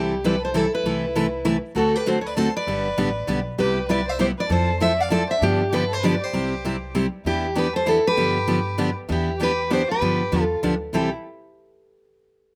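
Swinging in a lively 3/4 at 196 BPM, this dry, outdoor excerpt of acoustic string swing in C major sets an up-front, fresh-stringed picked dreadnought guitar on the melody with slapback echo, a second picked dreadnought guitar on chords, a warm bowed violin with vibrato and portamento tracing an expressive, soft-edged second line through the same slapback, and a woody, thumpy pizzicato upright bass on gut strings, moving into a new section at 7.3 seconds.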